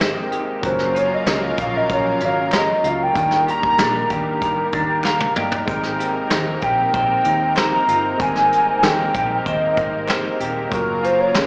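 A warbling, wave-folded synth lead carries the melody from 0.7 s, its sustained tone softened by subtle chorus and analog delay, in this nostalgic, dreamy cut of indie and bedroom pop at 95 BPM in a straight 4/4. Beneath it, a lush, detuned unison pad holds sustained chords with an airy noise layer and chorus. A twangy, slightly broken-up electric guitar through a small old amp adds picked accompaniment with vibrato and slapback echo. A barky tine electric piano sits in the background, lightly overdriven with a cassette-tape tint, and plays a fill at 4.4 s, overlapping a drum fill from the soft brush kit, with its tight kick and medium-tuned snare, at 5.0 s. A dark, foam-muted picked bass anchors the low end, a very quiet, crisp group handclap adds human texture, and the harmony drifts through major-seventh and ninth chords starting on Abmaj9, all heard as if from a live gig through a club PA, with small-speaker color and light room reverb.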